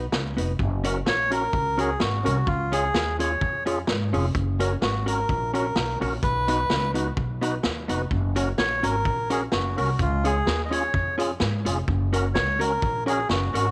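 Ska with an upbeat, bouncy feel and a light swing, heard as a short cut from a longer piece. A reedy, breathy melodica carries the tune up front from 1.1 seconds, its nasal edge softened by a smooth, dark tone. Beneath it, a pizzicato upright bass sounds woody and close, while a vintage drum kit of hi-hat, kick and medium-tuned snare comes across saturated and gritty, with a tight kick and a rolled-off top. Set further back, a clean, compressed hollow-body jazz guitar supplies dark accompaniment, and a fat tonewheel organ, lightly overdriven with audible key click and a fast rotary speaker, adds stabs from 0.8 seconds. The harmony circles through B, F# and C#, and a light, small-room reverb gives the whole band a snug, intimate space.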